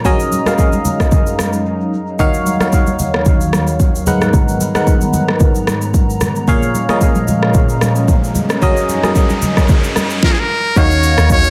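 A hypnotic, deep amapiano excerpt opens with a biting, barking electric piano treated with chorus, tremolo and dub echo up front, over a hollow, flute-like pad that pumps with the beat and an overdriven deep house kit of deep kick, snare, rim click, hi-hat and shaker, while bright congas echo in the background. An electronic riser builds from 7.8 seconds through a minor-key progression. A buzzy, metal-muted trumpet with vibrato takes a jazz-style solo at 10.2 seconds, and a dark, round log drum bass lands at 10.8 seconds in an echo-heavy digital space.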